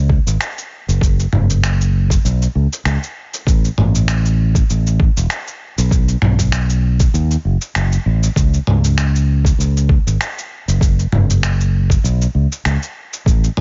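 A loose, lightly swung sixteenth-note feel in 4/4 drives this short sunset chillout fragment, which has a relaxed, smooth mood. A fingered electric bass opens the piece at 0.0 seconds, sitting up front with a warm, direct-and-amped tone in a low register. An electronic kick drum arrives at 0.1 seconds, thumpy and gritty, its overdriven, compressed sampler-style punch placed close alongside the bass. Just behind it, a dusty soul sampler-style kit adds cabasa, finger snaps and toms, with its own overdrive and a small-room character. The overall sound is dry and dark at the top end, giving the groove an intimate, lo-fi haze as it plays through to the cut at 13.6 seconds.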